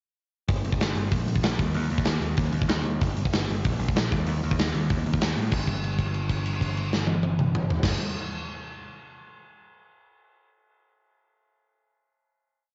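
At 0.5 seconds, a growling picked electric bass and a big rock drum kit crash in together at 192 BPM, launching a short, angry punk rock piece in G minor with a straight 4/4 feel. The bass is bright, direct and amped, its overdriven tone driving steady eighth notes in a low register. The acoustic drums sound big-room and mid-forward, sitting up front with a tight kick, a medium-tuned snare, hi-hat, toms and crash cymbal pushing a fast punk groove, all colored by a cassette tape effect. The verse charges ahead until 5.5 seconds, when the band hits a final held note that rings until 7.8 seconds. The whole piece has the rough, dulled top end of a home cassette recording, with only light reverb around it, and the result is raw and aggressive.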